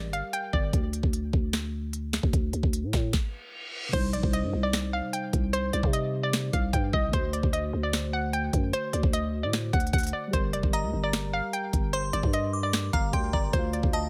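A growling, buzzy 808-style bass anchors this menacing, hard-hitting trap excerpt, running throughout at 150 BPM in a half-time feel. A hollow, bouncy square-wave pluck carries the melody up front, appearing briefly at the start and then returning at 3.9 seconds, with muted, intimate synth keys in a darker, softer shade underneath, both treated with chorus and a low-pass filter. The electronic trap kit hits hard with a knocking kick, sharp snare, crisp hats, finger snaps and crash, all overdriven and sitting up front. After an opening break, the music stops briefly while a reverse cymbal leads into a new section, and from 10.7 seconds a glassy, crystalline FM bell adds a second line high above, colored by chorus, phaser and delay. The chords move through G minor, C minor and D7 in a dry mix with little reverb.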